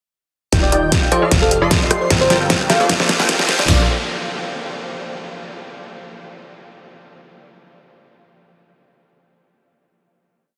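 Playful and euphoric, this short future bass piece is a single half-time build that rises from 0.5 seconds and resolves into a final chord held from 3.7 seconds. A punchy, detuned supersaw stab drives a rhythmic chord riff in spread voicing under a sweeping filter, while a deep, boomy 808-style bass with long gliding notes pumps beneath it. Two layered electronic dubstep kits, re-recorded in a large room, carry the drum fill: one pairs a punchy kick with open hats and snare, and the other sits up front with closed-hat rolls, rim clicks and a deep snare. A sparkling, warbling FM electric piano adds short answering phrases in the background, and a round, tine-like thumb-piano pluck with tape echo spins an eight-step arpeggio. Over this floats a very quiet, airy lead with vibrato and portamento that doubles the chords in unison, while a riser enters at 1.9 seconds. The whole mix is bathed in a huge ambient reverb and squeezed into a heavily compressed, radio-like sound.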